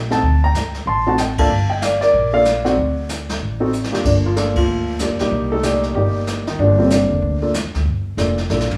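Late-night and swinging, this short cut from a longer jazz piano trio piece moves at a brisk 189 BPM in 4/4 with a light swing on the eighth notes, set in G minor. The grand piano carries the melody up front with a warm, short-sustained tone, ranging from G2 up to C6. Beneath it, the pizzicato upright bass sounds woody and growly with steel strings, while the brush drum kit sits distant and roomy, with dark cymbals, a medium-tuned snare and a boomy kick. The band plays live in one large studio with moderate reverb, and the harmony moves through D7, Gm7 and Cm7 across two matching passages. The whole trio hits an accent at 1.3 seconds and again at 4.5 seconds, and a drum fill at 3.7 seconds leads into the second pass.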